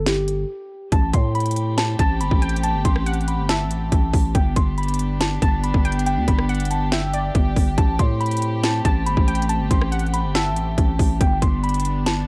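Hard-hitting and dark, this half-time trap excerpt at 140 BPM in A dorian pairs muted, felt-like synth keys carrying a soft, intimate melody with chorus against a growling, buzzy 808-style bass and an up-front electronic drum kit of hard-clipped kick, sharp snare, rim click and crisp hats. After a brief break at 0.5 seconds, a distant, reedy chamber string section enters at 0.9 seconds with bowed, gut-toned sustained chords over Am7 and G, and from 2.0 seconds a warbly, lo-fi detuned pluck adds a mellow second line with chorus and tape echo. The production is dry and dark, cut from a longer piece.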